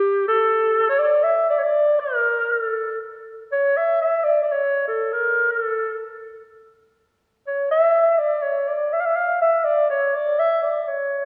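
Klezmer in A phrygian dominant at 122 BPM in a straight 4/4, soulful and festive, in a short cut from a longer piece. A breathy clarinet plays solo throughout the 11.2 seconds, up front and mellow with vibrato, subtone and a soft attack, lending a vintage, jazz-inflected colour between G4 and F5. A wet scoring-stage reverb with a 1.9-second decay places it in a church or concert hall, and the tuning sits slightly high at A4 = 444 Hz.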